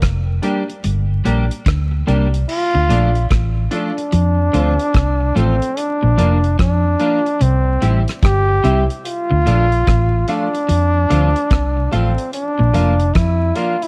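A clear, up-front trombone sings a smooth-topped melody with vibrato from the first moment of this meditative, serious roots reggae excerpt at 73 BPM in D minor, set over a dark, picked electric guitar riff, a round, foam-muted fingered bass and a dry, damped 70s drum kit with a tight kick, rim clicks, hi-hat and dark cymbals on a swung sixteenth feel. From 0.4 s a very quiet, compressed clean guitar with analog chorus adds accompaniment, and an intimate grand piano with audible action noise and deep bass plays stabs as the chords move from Gm into a Dm, F, Bb, C cycle. Light reverb, studio ambience and vinyl crackle give the sound an aged, lived-in finish.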